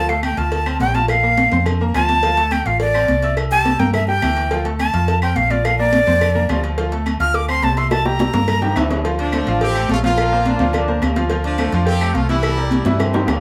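A breathy, bright jazz flute leads this fiery, passionate salsa excerpt, soloing up front from the start with crisp, chiffy attacks and vibrato until about 8.9 seconds. Underneath, at a brisk 212 BPM in D minor, a concert grand piano with deep bass and present sparkle plays the accompaniment. A dark, punchy hollow-body electric bass sits up front. A busy percussion bed surrounds them: round, low-tuned cowbell and bongos played with soft hands sit close, while thin-skinned, high-tuned congas, distant ringing agogo bells and timbales, and woody, saturated claves fill the background. Drum fills close the flute's solo and the end of the clip. At 9.2 seconds a brilliant horn section takes over the melody with light vibrato, joined at 10.3 seconds by a mellow, roomy trombone section on a tight second line, all set in a small, wet room that sounds like a band playing live together.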